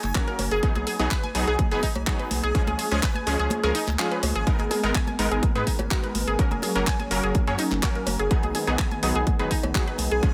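A punchy, up-front electronic kick drives this dreamy, expansive progressive house passage, dropping out between 3.5 and 4.5 seconds while handclaps and sidechain-pumped hi-hats, ringing, dry congas, cowbell and bongos in the background, and a deep, saturated sine sub bass ride the same pump. A vintage, warbling analog pluck spins arpeggios with chorus and dub echo, a detuned supersaw delivers pumping stabs also fed into dub echo, and a very quiet, reversed granular texture glows high above. From 4.5 seconds a lush, airy unison pad with chorus and phaser adds sustained chords over a light digital ambience.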